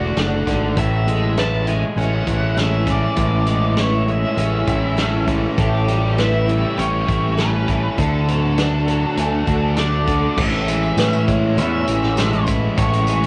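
Shoegaze and dream pop rock at 100 BPM in A major, this wistful, blissful excerpt from a longer piece moves through Amaj7, A7 and D chords with a straight 4/4 feel. A growling, overdriven fingered bass sits up front, while a loose indie drum kit enters at 0.2 s with a punchy kick, dark cymbals and a gritty, rolled-off, tape-saturated tone. A biting overdriven guitar carries a riff, joined faintly by a crunchy double-tracked guitar and a very quiet, compressed clean electric guitar recorded direct. Behind them, a woody, boxy twelve-string acoustic guitar shimmers in picked arpeggios through lush chorus and analog delay, and a mellow vintage string machine holds sustained viola chords with phaser and ensemble chorus. From 0.8 s an octave-fuzz lead guitar sings a dark, distorted melody with analog delay, and a jingly, band-limited tambourine slips in at 10.4 s. The whole mix has the soft haze of a home cassette recording in a light reverb.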